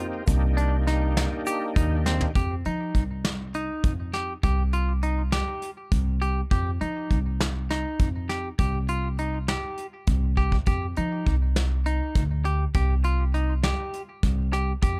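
A woody, thumpy upright bass sits up front in this brooding, intricate progressive instrumental, a passage cut from a longer piece that moves in an uneven 7/8 meter with a straight feel. Alongside the pizzicato gut-string bass, a bright, clean semi-hollow electric guitar plays compressed, picked arpeggios through tape echo for the whole fifteen seconds. A soft brush drum kit with a tight kick, medium-tuned snare, hi-hat and toms enters at 0.3 seconds and adds fills at 2.1 and 10.4 seconds. Only in the opening moments, a thick, gritty overdriven tonewheel organ with chorus vibrato and a slow rotary speaker supplies accompaniment, while a grainy tube shaker sits in the background. The harmony shifts from C minor seventh to C minor, then to an F suspended chord and a bare C fifth, all captured in a dark, dry production with little reverb.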